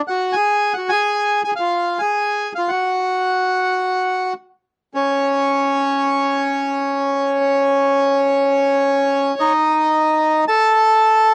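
A solo bandoneon, reedy and dark with a mid-forward presence placed up front, carries this elegant, nostalgic tango fragment at 109 BPM in 4/4 with a rubato feel, touching an F minor chord early before a second section begins at 4.9 seconds, all captured in a dry, close 1970s-style studio sound with light reverb and tuned to A4 = 438 Hz.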